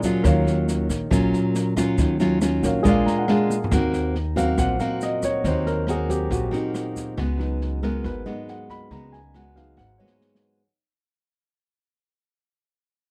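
A fingerpicked nylon-string guitar, full-bodied and up front with audible finger squeak, opens this intimate, melancholic bossa nova alongside a grand piano fill, an open jazz drum kit and a grainy, mellow tube shaker, with the upright bass joining a moment later. At 139 BPM in 4/4 with a straight feel, the piece sits in Eb minor, moving through Ebm9, Bb7, Ebm6 and Db7sus4. The pizzicato gut-string bass sounds woody and thumpy, while the dark, smooth kit plays kick, rim click, snare and toms, with a boomy kick and medium-tuned snare, and adds a drum fill around 3.5 seconds. From 3.7 seconds the natural-sounding piano, its action noise audible, takes a solo as the music begins to fade out, and the shaker stops at 7.2 seconds. The recording is dry and close in a 1970s studio style, and this passage is cut from a longer piece.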